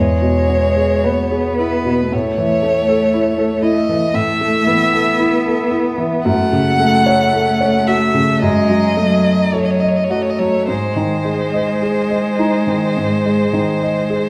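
In a rubato 4/4 at 52-60 BPM, this solemn, yearning slow romantic movement for piano trio, cut from a longer piece, sets a rich, focused, up-front bowed violin melody with vibrato between B4 and F#5 above a smooth, even bowed cello second line and a clear, natural concert grand piano accompaniment with deep bass and short sustain, all three playing together through all 14.3 seconds over chords moving from E through A, F#m and D#dim/F# to G#, bathed in a wet recital hall reverb.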